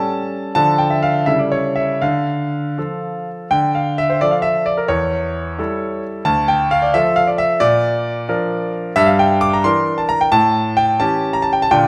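A concert grand sits up front in a moderate recital hall, its bright, brilliant tone carrying a long sustain into the room's reverb while the faint noise of the action stays audible, giving the sound an intimate, polished closeness. This is a dramatic, restless fragment of a classical-period piano sonatina, cut from a longer piece and played solo across its full 11.9 seconds. The music moves in 6/8 with a free, rubato feel, and the piano ranges from deep bass up to D6. A short opening phrase returns at 3.5 seconds and then stretches out, with the harmony turning between minor-key and dominant chords. Later it passes through a B-flat chord and a half-diminished colour before coming to rest on A7 at 10.3 seconds, leaving the tension unresolved.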